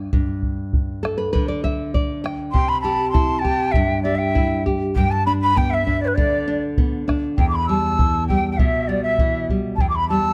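A breathy large quena with soft-attack vibrato and rolled-off highs carries the melody from 2.5 seconds, joined by an airy, bright large quena on a quieter second line, over a full-bodied, fingerpicked nylon-string guitar with audible finger squeak, which plays a fill at 0.7 seconds, and a deep, dark, dry bombo, in an earthy, wistful Andean folk passage at 99 BPM in 2/4, tuned to A4 = 437 Hz and cut from a longer piece, caught by close, detailed microphones with light reverb as the chords move from G5 through C, G and Em.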